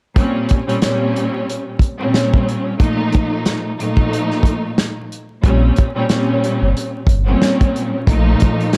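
Gritty and reflective, this short cut from a longer boom-bap hip-hop piece rides a swung 91 BPM groove in Bb dorian. A lush bowed string section carries the accompaniment from the start, its vibrato and portamento giving the ensemble an expressive, singing quality, while cassette-tape coloring and filtering shade its smooth top. Alongside it, an acoustic soul drum kit with a tight kick, a medium-tuned snare and hi-hat sits up front with a mid-forward, rolled-off character from a small room. At 5.4 seconds a deep, full sine sub bass with an octave layer enters, its fast attack and sustained notes thickening the low end until 8.4 seconds. The harmony moves between Bbm69 and F7 voicings, and the dark production, dry sound and vinyl crackle lend the whole cut a dusty, intimate feel.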